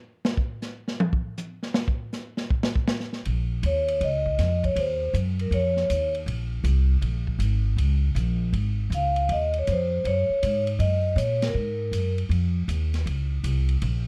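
Ringing, metallic vibraphone with medium mallets and motor off carries a smoky, moody Bb minor melody in this dry, dark small-group swing and bop jazz excerpt at 159 BPM, following a drum solo on a vintage kit with dusky cymbals, a tight kick and a rolled-off top; a woody pizzicato upright bass joins at 3.3 seconds and the vibraphone at 3.7 seconds, both up front over Bbm and Ebm7 changes, before a band accent at 11.4 seconds.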